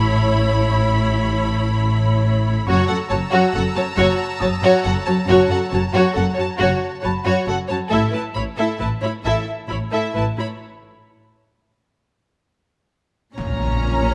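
This excerpt of a tense, uneasy suspense film score opens with a full string ensemble in a steady triple metre. Distant, soft-attacked violins carry the melody with expressive vibrato over a smooth, close second violin line. Violas add portamento-laced accompaniment, and even, rich cellos and lush double basses anchor the low end. A fingerpicked concert harp rings quietly in the background, while a high violin texture sits above until 7.4 seconds. The harmony drifts between hovering suspended and darker minor colours. After a break, an electronic impact strikes at 13.4 seconds as the high violins return and the chord turns to Bbm, all set in a moderate scoring-stage reverb.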